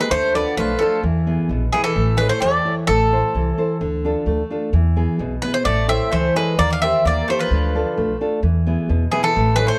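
Set in light reverb, this driving, dramatic Greek folk excerpt at 130 BPM in 2/4 puts a metallic, double-strung bouzouki melody up front over a second bouzouki line that drops out between 2.7 and 5.7 seconds, a full-bodied, fingerpicked nylon-string guitar with audible finger squeak, and a woody pizzicato upright bass, all moving in D dorian sharp4 through chords such as Dm, E, A and Eb.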